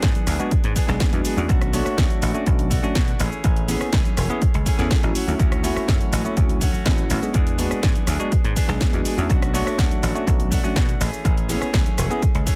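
Kick drum, slap bass, clean guitar riff and house drum kit all start together at the top of this funky, feel-good filtered disco house excerpt, moving at 123 BPM in E mixolydian. The dry, punchy kick sits up front beneath a bright, foam-muted thumbed slap bass with tube saturation, a compressed clean picked guitar, a layered drum kit with a cracking snare and tape-warm hats, rim clicks and shaker, and very quiet saturated egg shaker and congas. At 0.4 s a bell-like tine electric piano with phaser joins the bass and guitar under a low-pass filter and sidechain pumping, voicing chords from E7 through Bm7, Amaj7 and Dmaj7.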